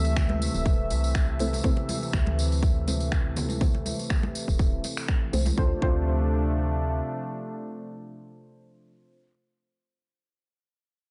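Warm and driving, this afro house fragment at 122 BPM in D minor sets a punchy, up-front electronic kick and tape-warm finger snaps over ringing congas, a jingly tambourine and a round, woody FM bass, while a deep, full-bodied chord stab with delay moves through a filter sweep until 5.6 s, where the harmony shifts from Am/D to Dm7, and a smooth, warbling vintage pad with chorus breathes under sidechain pumping as the kick drops away at 6.0 s, all in a dry mix.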